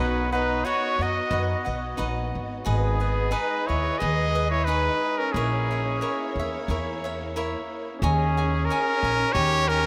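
Drenched in a vast, echoing cathedral reverb, this short fragment of dramatic, passionate mariachi moves at 90 BPM in 4/4 and G# minor, over chords that run from B through G#m and A#dim to D#7sus4 and then D#7. A clear, punchy trumpet with a smooth top carries the melody up front in classical style, shadowed below by a mellow, vintage-toned second trumpet, while a crisp, picked acoustic cavaquinho supplies the accompaniment. A thumpy, woody pizzicato upright bass sits prominently underneath, and a dark, lush bowed violin section with vibrato holds sustained chords in the background.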